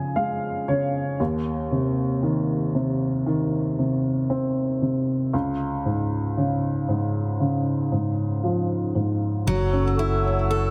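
This short cut from a longer piece sits in a small room with light reverb, giving it an intimate, close feel. It is a melancholic, heartbroken pop ballad at a slow 58 BPM in straight 4/4, tuned to A4 = 442 Hz. A woody upright piano carries the accompaniment alone from the start, up front in the mix, opening with a fill over the first 1.2 seconds as the harmony moves from C#/E# through Cm/Eb to C#. At 9.5 seconds the arrangement opens onto F#m7: an airy, breathy pad with chorus holds soft sustained chords high above, a bright, full-bodied steel-string acoustic guitar picks arpeggios through a digital delay, and a dark, round fingered electric bass lands punchy and prominent on a low F#. The new layers give the closing moments a fuller, aching lift before the cut ends at 10.7 seconds.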